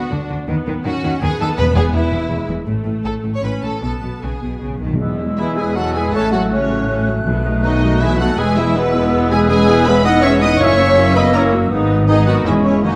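In a lilting rubato triple metre, this cheerful, graceful classical-period orchestral excerpt opens with lush bowed strings, with violins carrying the melody over a second violin line, smooth violas, and focused cellos and double basses, accented by quiet, close, dry timpani strokes from 1.6 seconds. Airy flutes and a soft-attack bassoon join at 5.0 seconds, followed at 5.4 seconds by a clear clarinet, dark sustained horn chords and mellow, distant trumpet stabs, all within a reverberant recital-hall ambience.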